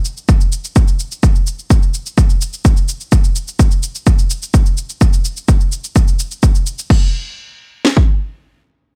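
Melodic techno with a driving, dramatic mood, built on an up-front, overdriven techno drum kit whose heavy kick and cracking snare run from 0.3 to 8.1 seconds in straight 4/4, alongside a quieter layered electronic shaker and crash cymbal that enters first at 0.1 seconds and plays until 7.0 seconds, both parts carrying overdrive and small room reverb in this short cut from a longer piece.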